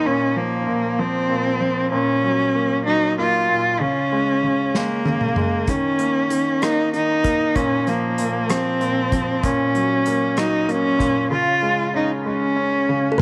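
A bowed solo cello, focused and vibrato-rich with a smooth top, carries the melody of this melancholic, dramatic six-eight pop ballad from the start, touched by tape echo, over a clear, polished concert grand piano with deep bass, with the chords moving through Bbsus2, Gb/Bb, Db5 and Eb5. An acoustic drum kit played with bundle sticks enters with a fill at 4.7 seconds, bringing a tight kick, medium-tuned snare, rim clicks, hi-hat and toms. At 13.1 seconds a woody, hollow-sounding kalimba plucks a brief, ringing second line just as this echo-chamber-reverb excerpt is cut off.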